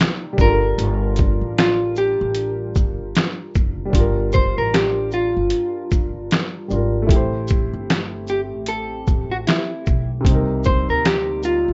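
A mellow upright piano with cassette-tape colour and a soft, flute-like pad in the background open this hazy, melancholic lo-fi hip hop excerpt over a gritty, pitched-down sampler-style drum kit of finger snaps, hi-hat, shaker, snare and a thumpy kick, joined at 0.4 s by an up-front, clean hollow-body jazz guitar melody and a woody pizzicato upright bass, captured in a rough home-demo mix as the chords move from Gm7 to Am7 to Cm7.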